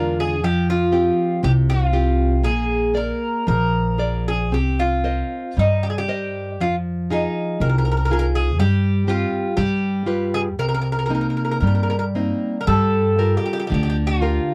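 A dry, close 1970s-style studio sound frames this passionate, mournful fado-style ballad in C minor, moving in a rubato 2/4 at around 56-61 BPM and cut from a longer piece. Up front, a metallic, double-strung Irish bouzouki picks the melody while a classical nylon-string guitar fingerpicks a warm accompaniment, and a woody, thumpy gut-string upright bass plays dark pizzicato lines beneath. The harmony drifts from Fsus2 through Bb7, Cm7 and Fm7 to a G7sus4 resolving to G7, then shifts to new material at 12.7 seconds on Gm7.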